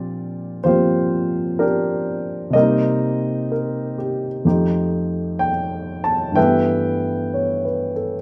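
A smoky, intimate jazz ballad excerpt at a slow 63 BPM with a gentle swing, played by a solo grand piano that sits up front with a natural, warm tone and audible action noise, spanning F2 to A5 through Bb69, Cm7, F9 and G69 harmonies in a moderate studio reverb that suggests a live room.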